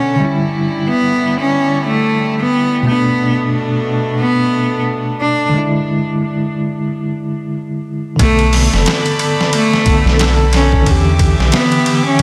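A clear, bowed cello carries the melody with smooth vibrato and dub echo, over a bell-like tine electric piano with tremolo and a filter sweep, and distant, earthy chamber strings holding sustained chords with vintage 12-bit sampler grit. This hypnotic, cinematic trip hop cut in B minor moves at 90 BPM with a swung 16th feel and passes through a break from 5.5 seconds. At 8.2 seconds a round, deep analog bass and an overdriven, gritty sampler-style drum kit with a thumpy kick enter, under light digital ambience and a dense, heavily limited modern master.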